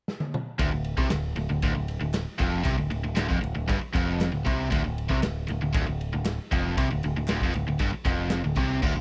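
A raw garage drum kit opens this swaggering, gritty classic rock excerpt with a fill, its punchy kick and saturated, dark tone sitting up front, before two overdriven picked electric guitars, one bright and compressed and the other biting, drive a low riff over D minor at 0.6 seconds alongside a growling, overdriven bass, while crisp group handclaps join in the background at 1.1 seconds, all in a dry, close 1970s-style studio recording.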